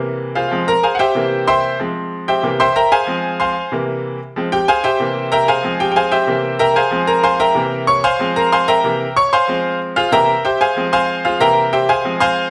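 A bright concert grand piano plays alone from the very start to 12.5 s, rocking steadily between C7 and F minor in a fiery, danceable Latin groove with a straight feel. The piano sounds brilliant yet worn, with deep bass and an up-front presence, and a slapback echo adds a quick doubling to its attack. A moderate large-studio reverb gives the brief passage, cut from a longer piece, a sense of space around the instrument.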